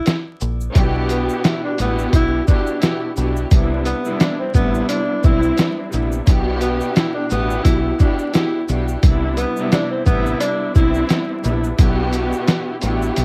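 A swung, head-nodding boom-bap groove drives this reflective, moody hip-hop excerpt, its lo-fi sampler-style drum kit sitting up front with a thumpy kick, a medium-tuned snare, hi-hat and shaker, all pitched down, compressed and muffled with a tape-warm cassette character. A tube shaker adds a grainy, bright texture in the background, while a deep dub fingered electric bass sits up front with a dark, round, foam-muted tone. From 0.7 s a lush studio string section enters, bowed as an ensemble with vibrato, portamento and a smooth top, filtered and softened with cassette tape and plate reverb as it carries the harmony between Em9 and Cmaj7. Above it all, a breathy tenor saxophone, present from the very first moment, plays a mellow, whispered jazz-style solo in subtone, with soft attacks, scooped notes and vibrato, heard distant and roomy through filtering, plate reverb and tape echo until it drops out at 11.3 s. 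The whole piece has the intimate feel of a home cassette recording, with light reverb and a layer of vinyl crackle.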